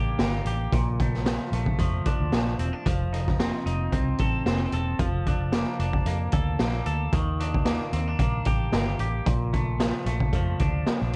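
A lightly swung sixteenth-note feel carries this nostalgic, laid-back indie and bedroom pop fragment, where a gritty, saturated garage drum kit with a punchy kick sits up front from 0.2 s, a dark, round, foam-muted fingered electric bass holds the low end, and a clean, twangy picked electric guitar with subtle chorus and vibrato moves through a progression of seventh chords, the whole mix softened by light reverb and the warbling pitch drift of worn cassette tape.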